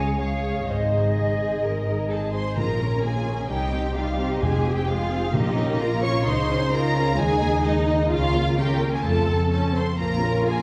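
A lush violin section carries the melody with expressive vibrato over a second violin line, dark violas and portamento-tinged cellos in a determined, swashbuckling cinematic cue at 129 BPM in Bb dorian. An airy flute group adds a second line until 2.3 s, a ringing harp plays arpeggios in the background and woody double basses anchor the bass, while articulate hard-mallet timpani enter at 2.6 s and stop at 6.0 s. The orchestra sits further back in a reverberant scoring stage, and the harmony moves from Db and Ab into a Bb minor progression that reaches F before settling on Bbm.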